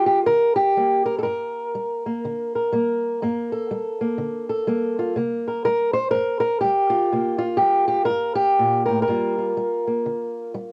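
A fingerpicked old ladder-braced acoustic guitar carries this short excerpt of mournful, soulful acoustic country blues alone, sitting up front with a dark, woody, boxy tone and the dull character of old strings. The tune moves at 123 BPM in 4/4 with a swung eighth-note feel, set in G minor and tuned slightly sharp to A4 = 441 Hz. The guitar ranges from G2 up to C5, opening on Gmadd9, shifting to C5 at 5.2 seconds and settling on Gm7 at 9.1 seconds. A moderate studio reverb gives the instrument a small sense of space, while the cassette tape coloring lends the home recording a worn, intimate grain. Lasting about 10.7 seconds, the fragment is cut from a longer piece and feels like a lonely glimpse into a larger song.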